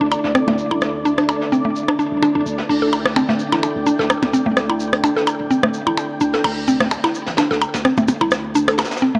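A woody, round, mallet-like synth pluck opens this hypnotic, sparse minimal techno excerpt up front with chorus and delay, over a punchy sine sub bass with a pitch-drop attack, a deep, moody detuned pad with chorus, and a flickering, grainy granular texture sitting in the background. At 0.1 s a small-room jazz kit played with brushes enters, covering snare, hi-hat and shaker, its top rolled off, alongside tape-warm electronic blips and a rim click fed through dub echo. The 16ths carry a light swing, and a lush hall reverb surrounds the mix.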